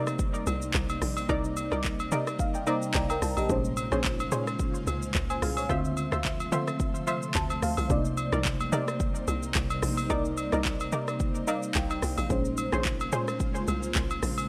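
An up-front electronic drum kit with a deep kick, crisp hats, handclaps, rim clicks and shaker drives this late-night, hypnotic amapiano excerpt on swung sixteenths, joined by a tight, percussive FM log drum bass and close, acoustic agogo bells. A round, dark FM electric piano colored by chorus and phaser plays fills around 1.8, 6.8 and 11.2 seconds over an ethereal, warbling pad of detuned sawtooth voices that pumps with sidechain compression. A bright sawtooth chord stab with filter sweep, chorus and delay punctuates the minor ninth chords until 13.2 seconds, all set in a light digital ambience.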